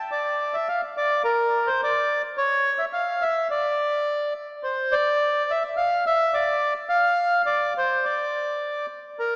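Festive and jolly, this short cut from a longer alpine folk piece moves at 106 BPM in a straight 2/4, set in D minor. A solo accordion carries the whole passage, entering at 0.1 seconds and playing through to 9.4 seconds within a compact range from Bb4 to F5. Its tone is reedy and full, captured close-miked and dry so that it sits up front. The overall recording places the listener further back in a concert hall, with a long, wet reverb and a small-speaker quality to the sound. The music falls into two sections, with the second beginning at 4.6 seconds.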